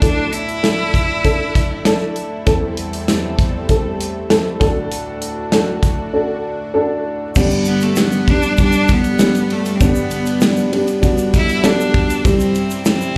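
A dark, woody upright piano with audible action noise and long sustain drives this anthemic piano-driven pop excerpt at 98 BPM in G major. It is joined by a punchy, up-front acoustic drum kit with bright cymbals, a focused bowed cello melody that sings with vibrato at the opening and returns at 7.7 seconds, a lush, detuned sawtooth pad with chorus sitting in the background, and a grainy egg shaker entering at 7.4 seconds, with plate reverb and slapback echo on the piano and cello, the whole performance captured live through a club PA with moderate room reverb.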